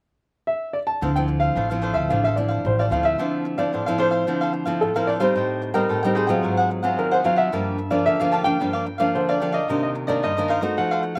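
A straight 4/4 samba groove at 110 BPM in D minor sets a bittersweet, nostalgic mood in this fragment of a longer piece: an intimate concert grand with audible action noise carries the melody from 0.5 s, crisp picked cavaquinho and up-front fingerpicked nylon-string guitar with slapback echo join at 1.0 s, and a woody, growly pizzicato upright bass plays only until 3.1 s, all heard in a dry, open-air setting as the harmony moves from Dm9 through Am7b5, G#6 and Gm7 to Cm9.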